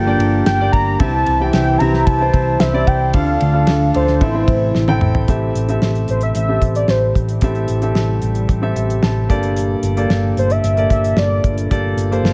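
Piano-driven pop with an earnest, bittersweet mood, where a velvety chorused synth lead carries the melody over an intimate grand piano with audible action noise, a round hollow-body picked bass, a damped 70s drum kit with a fat snare that enters at 0.2 seconds and fills just before the second section, a mellow French horn section in the background that stops at 5.0 seconds, and a very quiet shimmering pulse-width pad, all in light small-room reverb.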